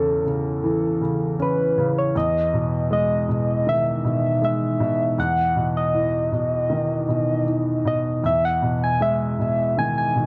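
A straight 4/4 pulse at 79 BPM carries this hopeful, tender pop fragment in E major, where a clear grand piano, intimate and polished with audible action noise and long sustain, plays the accompaniment through A/E, Emaj7 and B/E harmonies, while a soft struck FM synth lead, round and keys-like with a fast attack, chorus and vibrato, sings the melody up front, all set in a light, small-room reverb.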